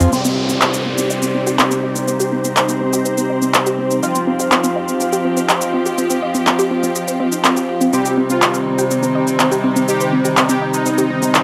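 Dark and cinematic, this short cut from a longer melodic techno track moves in a straight 4/4 over chords that shift from Cm7 to F5 and back to Cm7 at 7.9 seconds. A clear, bowed string section holds sustained chords through a low-pass filter, and a filter sweep runs across it for the whole passage. A punchy, detuned unison pluck plays arpeggios through analog delay and carries its own filter sweep, while an edgy sync-sweep polysynth adds nasal stabs with chorus and delay. Up front, an overdriven layer of electronic shaker and handclaps drives the groove. An electronic downlifter falls away by 4.0 seconds, a cloudy, evolving granular pad sits in the background with its built-in reverb, and at 7.9 seconds a smooth soft supersaw enters with a melody. The recording is dry and gritty with light reverb, giving the layered synths a raw hardware edge.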